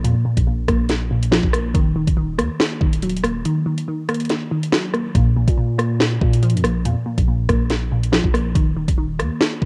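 Built on a half-time drill groove at 141 BPM, this tense, menacing hip hop excerpt pairs a tape-warm, up-front kit of knocking kick, sharp snare, rim click and metallic hats, its kick dropping out from 3.4 to 5.2 seconds, with a deep, sine-like 808-style bass of long decaying notes and a glassy, crystalline wavetable pluck, detuned and chorused with a noise layer and filter sweep, moving through Bb5, Ebm and Eb5 chords under light digital reverb with a cassette-tape home-recorded character.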